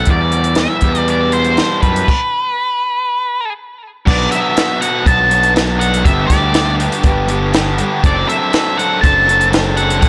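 Indie rock at 121 BPM in a straight 4/4, this short section cut from a longer piece feels bittersweet and cool, recorded in a small room with a blown-out, overdriven character. An up-front octave-fuzz lead guitar carries the melody between B4 and A5, its dark, distorted tone trailed by digital delay. Beneath it, a bright, crunchy overdriven guitar and a raw garage guitar with a touch of chorus both play riffs, while a round, fuzzed fingered bass anchors the low end with a dark growl. A compact cocktail drum kit sits up front with a dry sound, punchy kick, high-tuned snare and dark cymbals. After opening on Em7, the band hits a stop from 2.1 to 4.1 seconds, then moves through Bm7, G and D7/F# to the close.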